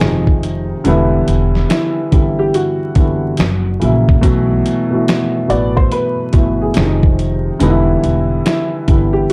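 Dry, gritty and flecked with vinyl crackle under a light reverb, this nostalgic, reflective lo-fi hip hop excerpt swings in 4/4 as a dark upright piano carries an intimate, mellow melody with audible action noise over a boxy, slightly detuned piano accompaniment with short sustain, alongside a woody pizzicato upright bass thickened by tube saturation and an up-front, compressed sampler-style drum kit of finger snaps, hi-hat, thumpy kick and fat snare re-recorded in a large room, moving through Fm7, Em7, F#7 and B7sus4.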